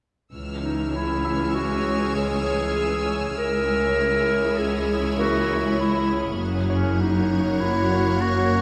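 Moving at 99 BPM in a straight 5/4, this eerie, mysterious cinematic passage in C# dorian is cut from a longer piece and rests on C#m before shifting to F# at 6.4 seconds. From 0.3 seconds, bowed string sections gather with vibrato: cellos and distant double basses hold the low bass, violas fill in accompaniment, and a background violin section carries a melody on C#5, while a second violin section adds a high, focused texture until 6.1 seconds. A clear, vintage-toned clarinet sits up front with a classical solo second line from 0.6 seconds. An icy glass pad enters at 1.1 seconds with slow-attack crystalline chords, detuned and airy, with chorus and its own reverb. A very quiet, brilliant grand piano adds texture with long sustain and audible action noise. A moderate scoring-stage reverb surrounds the ensemble.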